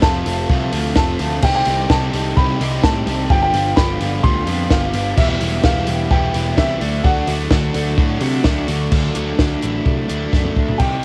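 A straight 4/4 pulse at 128 BPM comes from a compact cocktail drum kit, dry and up front with a punchy kick, high-tuned snare and dark cymbals, together with a fuzzy, overdriven picked electric bass, driving this jangly, wistful indie rock excerpt cut from a longer piece. Two guitars play riffs: a bright cranked stack guitar with overdrive and subtle chorus, and a compressed, warm overdriven electric guitar touched with spring reverb. Meanwhile, a woody, boxy upright piano carries the melody and a very quiet, airy flute ensemble with vibrato holds sustained chords over Fmaj7, Cm6, G7sus4, Em and Dadd9. The home cassette recording lends tape colour to the piano, guitars and drums in a light reverb, and a drum fill at 10.3 s rounds off the passage.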